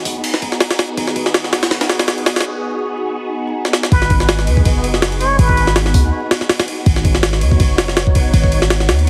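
Drum and bass with a jungle edge at 163 BPM in G# minor, this atmospheric, raw passage cut from a longer piece opens on a silky string machine holding a G#m7 chord with phaser and ensemble chorus, over a deep, boomy 808-style bass and a gritty, pitched-up sampler drum kit with a thumpy kick, sitting up front. A break from 2.4 seconds and a drum fill at 3.6 seconds lead into the drop at 3.9 seconds, where a plunger-muted trumpet plays a short, growling, raspy jazz solo with scooped notes and dub echo until 5.8 seconds. The whole track carries a heavily compressed radio sound with vinyl crackle and light reverb.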